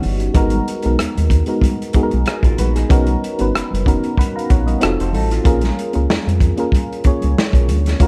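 A lightly swung sixteenth-note groove in 4/4 carries this short, introspective neo-soul and R&B excerpt, driven by a crunchy breakbeat kit whose tight kick, medium-tuned snare, rim clicks and hi-hat sit up front with a saturated, gritty edge and a rolled-off top. Underneath, a round analog bass holds the low end with a deep, sustained tone and a fast attack, while bright, damped congas tick quietly in the background. An FM electric piano with tremolo supplies the chords, its warbling, vintage sound mellow and decaying over a faint noise layer as the harmony moves from Abm9 to Bmaj7, then F7b9 and Bbm7. A clean, picked hollow-body archtop guitar adds a dark second line from 2.3 to 5.6 seconds, kept low in the balance. The production is dark and warm, with very little reverb, giving the whole groove an intimate, close feel.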